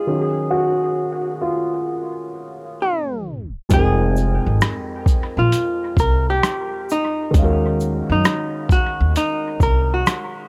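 Melancholic and reflective, this swung lo-fi hip hop excerpt opens with a dark, smooth, vintage upright piano carrying cassette tape colour and dub echo, joined at 2.8 seconds by a clean, fingered hollow-body jazz guitar melody with its own dub echo as a tape stop passes, and at 3.7 seconds by a woody, growly pizzicato upright bass, a muffled, overdriven sampler-style drum kit with thumpy kick, hi-hat, rim click and shaker, and a grainy tube shaker set in the background, the whole sitting in an echo-heavy mix with light small-room reverb.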